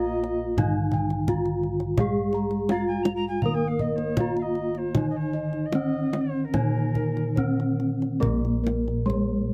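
Serene and shimmering, this Javanese gamelan excerpt puts a ringing bronze metallophone melody up front, struck with a wooden mallet, its paired tuning producing shimmering beats, over a softer metallophone accompaniment played with padded disc mallets. Bright, round bossed gongs play arpeggios while padded gongs carry a mellow bass line, and a tight kendang struck with hard hands keeps a straight 4/4 feel. An airy, distant alto recorder with vibrato and chiff traces an expressive second line until 7.9 seconds, and the ensemble is captured with close, detailed microphones and little reverb.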